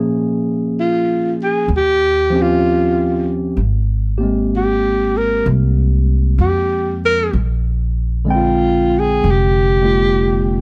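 A dry, close-sounding room frames this tender, late-night jazz ballad fragment, cut from a longer piece and swinging gently in four. A bright, barky tine electric piano comps through Bbm7, Eb13 and Abmaj9 to Bb13, while a woody, dark pizzicato upright bass anchors the low end, both sitting up front from the start. At 0.8 seconds a breathy, whispered alto saxophone enters with an intimate subtone and light vibrato, carrying the melody within a narrow range as the most prominent voice.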